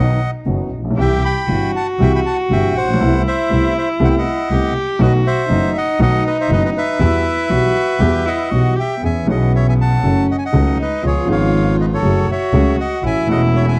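A dry, close 1970s-style studio sound frames this tense, melancholic tango excerpt at a rubato 120 BPM in 4/4, where a reedy bandoneon carries the melody over a nasal, airy-bowed sul tasto cello second line, a woody, open upright piano accompaniment and an up-front, dark bowed double bass sliding with portamento and vibrato, as the harmony turns from E harmonic minor to E major at 9.0 seconds.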